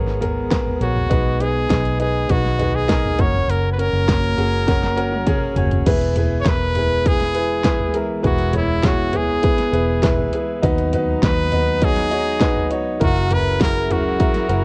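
A bright grand piano, a warm bowed string section floating in the background and a dark, round muted electric bass open this uplifting, anthemic piano-driven pop excerpt, joined at once by a punchy, layered electronic pop kit with a fat snare. From 0.8 s a brilliant solo trumpet carries the melody up front with light vibrato and scooped notes, and a drum fill from 4.7 to 5.9 s leads into the second section. The whole mix sits in a small room with light reverb, worn by warbly cassette-tape pitch drift and a dulled top end.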